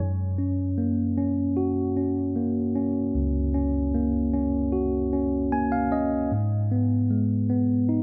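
Hopeful and emotional, this brief cut from a longer pop piece in F# major moves at 76 BPM with a straight 4/4 feel, as a solo tine electric piano, clean, direct and up front, spans C#2 to G#5 over chords moving from F# to G#m at 6.3 seconds, slips in a fill from 5.1 seconds, and sits in a lush hall reverb within a dark production.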